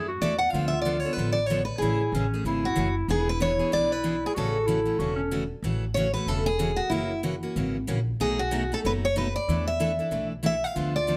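A breathy clarinet with light vibrato, a warm picked steel-string rhythm guitar and a woody pizzicato upright bass open this charming, playful swung excerpt of acoustic jazz manouche in A major at 188 BPM, with a bright, full-bodied picked lead guitar taking the melody up front from 0.2 seconds while the subtone clarinet's second line falls away at 5.5 seconds and returns briefly at 10.8 seconds, all in light reverb.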